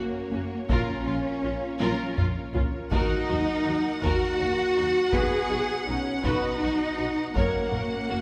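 Set in a straight-feeling 6/8, this relentless, tense passage of hybrid orchestral and electronic film score is driven by a taiko ensemble with heavy sticks that enters at 0.7 s and plays a fill between 1.8 s and 2.9 s. Up front, bowed cellos carry an expressive bass line over lush double basses, while a smooth violin melody with light vibrato rides above a distant second violin line, background violas, softly sustained French horn chords and a chorused, airy analog pad. A very quiet, tight sawtooth synth weaves plucky, detuned arpeggios through the texture, and everything sits in a wet, hall-like reverb in this brief cut from a longer cue.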